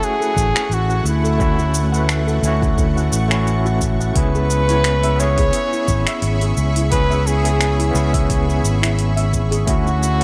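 Wistful and smooth, this sunset chillout passage, cut from a longer piece, moves at 87 BPM in 4/4 with a gentle 16th-note swing, drifting between Dmaj7 and C#m7. A flugelhorn carries the melody in a jazz style with vibrato, a soft attack and scooped notes, its tone given tape echo and shimmer reverb. Beneath it, a gritty, overdriven tine electric piano played through a combo amp adds accompaniment with fast tremolo and digital delay, while an ethereal, detuned ambient pad holds sustained chords with a slow attack, chorus and an octave-up shimmer. A mellow steel pan enters at 0.2 seconds with soft, dark arpeggios sitting in the background under digital delay and shimmer reverb. At 0.4 seconds a punchy, amped fingered electric bass arrives up front alongside a deep, layered electronic kick with a tape-tinged weight, joining a produced R&B kit of finger snaps, shaker and metallic hats captured in a small room, all set in a light reverb.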